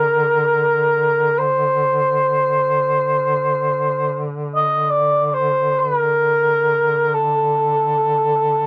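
A dark cor anglais carries the melody up front in this mournful, longing Caucasian lament, its light vibrato and classical phrasing ranging from A4 to Eb5 in free time. Beneath it, a warm duduk holds a low D3 drone with vibrato and scooped notes, set back and roomy in a folk style. Cut from a longer piece and lasting 8.7 seconds, it has the dry, close sound of a 1970s-style studio recording touched with light reverb.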